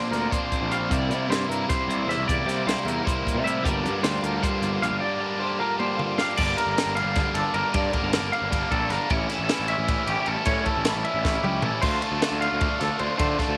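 Intricate and wistful, this math rock and midwest emo excerpt in G minor races along in a straight 7/8 at 308 BPM in eighths, moving through chords such as Bbadd9, C7, Gm7, A7 and Dm7. A biting, double-tracked overdriven guitar sits up front with its riff, a clean, twangy fingered guitar with tremolo spins arpeggios high above, and a warm twelve-string electric guitar adds picked accompaniment until it drops out at 7.7 s. A growly fuzz bass drives the low end, and a compact cocktail drum kit with a punchy kick, high-tuned snare and dark cymbals plays fills at 5.8 s and 11.2 s, all captured in a dry sound with little reverb.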